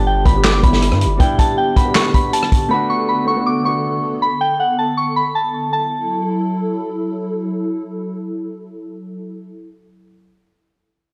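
Opening at once with a soft, warbling FM synth bell melody over warm grand piano and a distorted, saturated 808-style bass that drops out by 1.2 seconds, this dark, eerie half-time hip hop and trap fragment at 159 BPM in F# phrygian brings in a punchy vintage acoustic drum kit of kick, snare, rim click, hi-hat and handclaps that plays until 2.6 seconds, while a hollow, flute-like detuned pad with ensemble chorus sustains chords moving from G through Bm7 to F#m7 until 9.5 seconds, the whole recording dry and gritty with cassette tape character.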